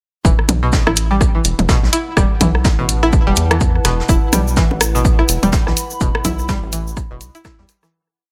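Cool and clinical, this short minimal techno groove in swung 4/4 is driven by a punchy, four-on-the-floor electronic kick and up-front programmed hi-hats. A rubbery, bouncy square bass plays a syncopated riff under a twangy, string-like resonator pluck, whose 9-step loop drifts against the bar through chorus and digital delay, both pumping with the sidechain. A warbling, lo-fi pad fades in above them with slowly shifting chords, while a looped brushed breakbeat with a rolled-off top and garage clicks, bongos and toms in cross rhythm fill out the kit. A grainy tube shaker joins in hand-played sixteenths at 4.1 seconds before the fade-out begins at 5.4 seconds.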